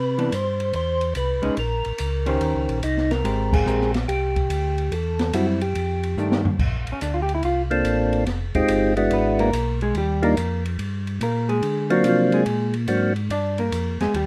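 Light reverb surrounds this greasy, swinging soul jazz organ trio cut from a longer piece: a percussive tonewheel organ with third-harmonic percussion and a slow rotary speaker carries the melody, a round, dark second organ with chorus vibrato holds down the bass, a clean, picked hollow-body electric guitar accompanies before taking a solo from 6.6 s, and a small-room acoustic drum kit with dusky cymbals and a boomy kick plays a fill just before that solo, after the whole band hits an accent at 3.5 s.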